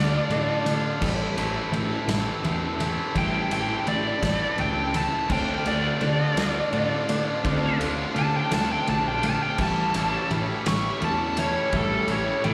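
Moody and bittersweet, this indie rock fragment, cut from a longer piece, moves in a slow 6/8 at 56 BPM in D minor, its chords passing from Dm to Am7, Dm7 and A7. A dark, distorted lead guitar with slapback echo carries a bluesy solo across the whole passage, riding above a biting, up-front overdriven guitar riff that shares the same echo. Beneath them, a bright, twangy twelve-string electric guitar plays a compressed, clean riff through analog chorus, while a fuzz-laden picked bass anchors the low end. A loose acoustic drum kit joins at 0.3 seconds with punchy kick, medium-tuned snare, ride and crash in a pumping small room. At 5.3 seconds a very quiet, thick unison pad of detuned sawtooth and square waves enters with slow attack, adding lush sustained chords as the sound of a live gig through the venue's PA and recital hall reverb surrounds the band.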